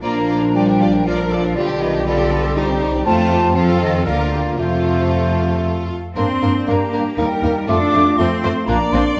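A quick, spirited classical-period movement for symphony orchestra in 3/4 at 118 BPM and B-flat major, this lively excerpt moves with uneven beats and rubato from a tonic chord through G7/B, C minor and F, settling back on B-flat at 8.7 seconds. A vibrato-rich violin section carries the melody from the background, while a clear, intense second violin line, a dark, distant clarinet and a small flute group with a crisp attack and pure tone add second lines. A mellow bassoon and a close, focused viola section accompany, a very quiet vintage French horn section holds sustained chords, and a smooth, even cello section joins the double basses in a full bass, all bathed in the wet reverb of a recital hall.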